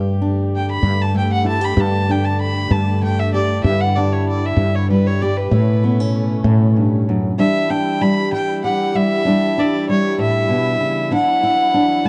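A reedy, gut-string fiddle carries the haunting, wistful melody from 0.6 s, coloured by plate reverb and tape echo, in this slow acoustic folk piece at 64 BPM in 6/8 and E dorian, over a dark fingerpicked steel-string guitar, a growly, round fretless electric bass that stops at 7.3 s, and a veiled, muted chamber string section holding sustained chords in the background of a lightly reverberant, warm mix.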